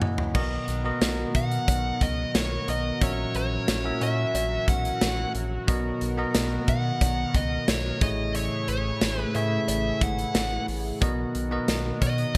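Bright, glossy 1980s-style digital production with a lush hall reverb frames this nostalgic pop cut at 90 BPM in B major, where a brief electric piano and drum fill opens onto bell-like tine electric piano accompaniment, a shimmering chorused pulse-width pad in the background, a round analog bass, a very quiet dry cowbell and an up-front studio drum kit with a tight kick, a medium-tuned snare and gated reverb, while from 1.4 seconds a dark, smooth overdriven lead guitar with digital delay sings the melody over a Bmaj7, F#7/A#, Bmaj7 and Amaj7 progression.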